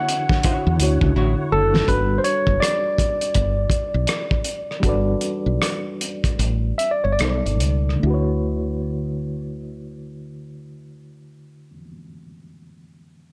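A swung sixteenth-note groove at 70-83 BPM in 4/4 drives this smooth R&B and neo-soul passage in D major, cut from a longer piece, with cloth-damped, muffled drums giving a fat snare and tight kick, a drum fill at 1.2 seconds, the kick muted from 6.4 seconds, and a woody, round fretless bass sitting up front. A barky, lightly overdriven tine electric piano carries the melody through analog delay until 7.2 seconds, over a reedy, worn electric piano with fast tremolo, a brief clean hollow-body jazz guitar line, and a tonewheel organ with key click and slow rotary at the start. The harmony moves from Dmaj9 to Gmaj9 as the tempo slows, passing a B7alt before settling on Dmaj13, inside a small room reverb.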